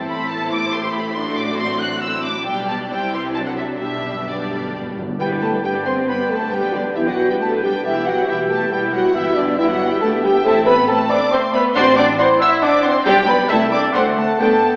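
In a quick, rubato 3/4 at 138 BPM, this lively, cheerful classical-period orchestral movement in G major sets a lush, portamento-laden symphonic violin melody over chamber violins, smooth violas, expressive cellos, double basses and present French horn chords, with a round soft-mallet timpani fill at 3.8 seconds just before pure flutes, a vintage-toned oboe, mellow clarinet and bassoon join at 5.2 seconds, and a brief timpani return at 9.1 seconds, all bathed in a wet concert-hall reverb and filtered through an AM-radio sound.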